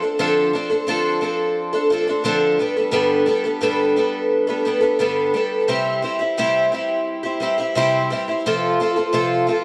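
A picked twelve-string acoustic guitar opens the recording and carries it alone from 0.0 to 9.6 seconds, a brief rock passage cut from a longer piece. The mood is jangly and open-road, with a straight pulse in four at 87 BPM. Its octave-doubled strings give a shimmering, slightly boxy tone, and a finger squeak sits clearly in the up-front sound. Tape echo trails the guitar, and a light reverb adds a little air around it. The harmony moves from Dm7 to Gadd9, settles on C at 5.7 seconds, and closes on F over C.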